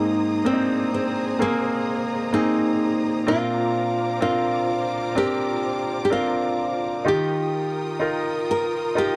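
In a slow, straight 4/4, this emotional, heartbroken pop ballad excerpt sets a fingerpicked nylon-string guitar melody, up front with finger squeak and a slapback echo, over a brilliant concert grand piano with deep bass and short sustain and a lush, bowed string section holding smooth, vibrato-rich chords through Abadd9, Bbadd9 and Ebadd9, all captured in a dry, close 1970s-style studio sound with light reverb.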